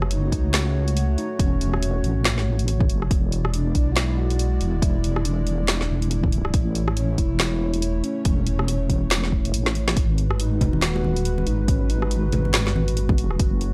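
A dark, detuned analog pad, a deep, compressed sawtooth wobble bass and an up-front electronic drum kit with a woody snare and dark hats open this brooding, cavernous excerpt of deep dubstep at 140 BPM in half-time G# phrygian. They are joined by a layered electronic kick that drops out at 9.5 seconds under a short drum fill, and a soft, breathy flute-like lead with vibrato, lush chorus and dub echo drifting in the background. Acoustic congas and bongos slip in at 10.6 seconds, all captured as a dry, gritty hardware recording over chords moving from F#m through E7 and A to G#m7.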